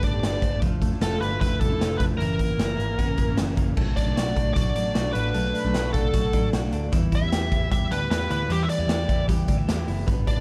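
Jangly indie pop at 152 BPM in a straight 4/4, this short cut from a longer piece feels nostalgic yet bright. A smooth, overdriven lead guitar carries the melody between G4 and E5, while a bright, clean, compressed twelve-string electric guitar spins twangy arpeggios beneath it. A full-bodied, picked dreadnought acoustic guitar sits in the background for accompaniment, and a vintage muted electric bass gives a round, foam-muted, punchy low end. Up front, a raw garage drum kit hits with a gritty, saturated edge, a punchy kick and a medium-tuned snare, its pumping stone-room sound rolled off at the top around hi-hat and crash cymbal. The harmony moves from Gadd9 through Dmadd9/F and F#7, then settles into Bm7 at 3.8 seconds before turning to Em, all within a dark, warm production and moderate studio ambience.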